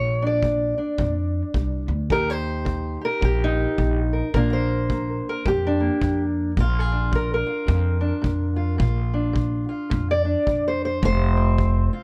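A fingerpicked steel-string parlour guitar carries the melody up front, its tone dark and boxy, ranging from low bass notes up to the higher strings. Beneath it, a pizzicato upright bass on gut strings gives a woody, thumpy low end, also close and present. A tight, natural kick drum played with brushes enters at 0.4 seconds, sitting further back in a small-room sound. This is a gritty, soulful acoustic country blues in 4/4 with a light swing. The harmony rests on Bb, moves to Eb at 2.1 seconds, returns to Bb, and lands on an F5 near the end. The recording is dry and intimate, and the passage is cut from a longer piece.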